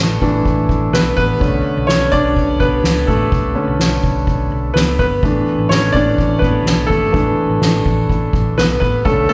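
Piano-driven pop at 126 BPM in A major with an uplifting mood, this short cut from a longer live club performance features a clear, up-front grand piano solo over Asus4 and Bm7 chords, supported by a dark, round hollow-body electric bass and a distant, roomy soft-mallet drum kit with a fat snare and punchy kick, all heard through the venue's PA with club reverb.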